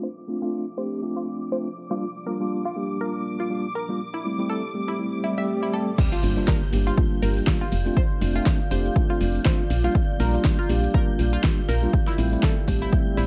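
This hypnotic, moody deep house passage opens on a mellow tine electric piano stabbing chords up front, a nasal, bright analog pluck arpeggio with phaser, tape grit and dub echo, and a high, shimmering string machine texture, all over a bed of vinyl crackle, while a deep, dark pad fades in behind them and filter sweeps move across the piano, pad and pluck. A very quiet swell arrives at 5.2 seconds and leads to an impact and the drop at 6.0 seconds. There, a punchy, overdriven kick and a drum kit with a fat snare and metallic hats land, joined at 6.2 seconds by a soft, round, woody FM bass, with sidechain pumping making the bass, pad, pluck, piano and strings breathe with the kick.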